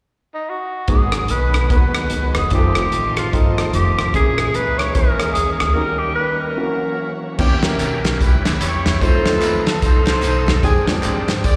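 Swinging its eighths at 148 BPM in 4/4, this soulful, solemn uptempo gospel passage opens at 0.3 s with a breathy, whispered tenor saxophone melody full of scooped notes, soon joined by a dark baby grand piano with audible action noise, a reedy tonewheel organ turning on a slow rotary speaker in the background, a floating, distant string section, a woody pizzicato upright bass and an up-front soul drum kit with dark cymbals; after a break at 5.8 s, a tight, mellow horn section takes over the melody at 7.4 s, backed by a tube shaker and group handclaps, the whole band heard live through a venue PA in a recital hall.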